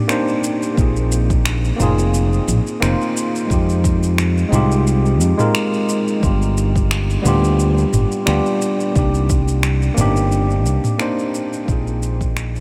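A dreamy mix soaked in huge ambient reverb frames this blissful, smooth sunset chillout excerpt at 88 BPM, with a gentle 16th-note swing. A worn, slightly out-of-tune tine electric piano, mellow and clean through a combo amp with delay, sits up front over Cm7, Bb7sus4, Fm7 and G7, joined by a produced R&B kit of finger snaps, shaker and toms. At 0.8 seconds, an amped fingered electric bass and a deep, layered, tape-warm electronic kick drum enter, before the music fades out from 9.9 seconds.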